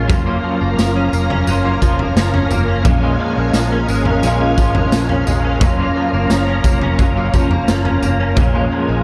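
Ethereal and haunting, this dream pop excerpt drifts at 87 BPM in a straight 4/4, alternating between Gbmaj7 and Bbm7 chords in a dark, roomy production with a 2.0-second scoring stage reverb. A slightly broken-up electric guitar through a small old amp plays picked, twangy accompaniment drenched in tremolo, lush chorus and shimmer reverb, while a direct-recorded clean guitar picks bright, compressed arpeggios through ensemble chorus, digital delay and shimmer, and a warbling vintage organ-string holds sustained chords. Underneath, a round, foam-muted fingered electric bass sits low. A raw garage drum kit with a punchy kick, a medium-tuned snare, tambourine and toms pumps, gritty and saturated, in its small room from 0.1 to 8.5 seconds.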